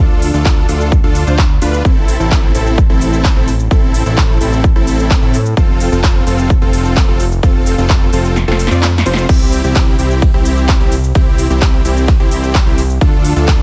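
A huge, detuned supersaw riff with sidechain pumping and dub echo carries this anthemic, uplifting festival progressive house drop at 129 BPM in C major, moving through Dm, Am, F and C over a fat, evolving analog bass with its own pumping, while a punchy, overdriven electronic kick sits up front and a layered big-room kit adds crisp hats, snare, handclaps, shaker, ride and crash, with the kick dropping out for a drum fill from 8.4 to 9.3 seconds in this dry, dense excerpt cut from a longer piece.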